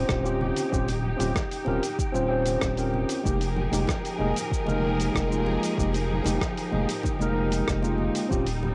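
An excerpt of relaxed, wistful sunset chillout in F minor at 95 BPM opens on a clean tine electric piano through a combo amp with cassette tape and analog delay, lush bowed strings with vibrato, a round, up-front analog bass and an airy, breathy wind-like noise texture in the background, joined at 0.1 seconds by a gritty, compressed sampler-style kit of cabasa, hi-hat and rim click, a deep layered electronic kick and distant, very quiet congas, as the harmony moves from Eb13 to Fm11 at 3.3 seconds and a faint electronic riser appears at 8.6 seconds, all within a light digital ambience and a dusty home-cassette sound.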